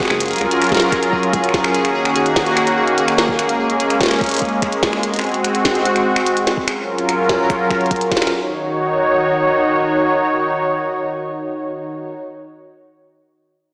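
A straight 4/4 beat at 146 BPM drives this melancholic, eerie IDM fragment, cut from a longer piece in Eb dorian. A soft, produced electronic kick sits low in the mix beneath a glitchy kit of finger snaps, clicky hi-hats and a tiny snare, placed up front and trailed by diffuse ambient delay, both re-recorded in a large room. Up front, a warbling vintage analog pad of detuned sawtooths holds smooth sustained chords through Gbmaj7, Ebm7, Bbm7 and Ab7 with chorus. A rubbery, hollow square bass with a resonant filter pluck appears only briefly, ending by 1.4 seconds, while a bright, tempo-synced gated triangle texture pulses on Ab4 in the background with chorus and its own reverb. The beat and texture drop out at 8.3 seconds, leaving the pad alone until 12.1 seconds, all bathed in a lush hall reverb that gives the mix a dreamy, small-speaker character.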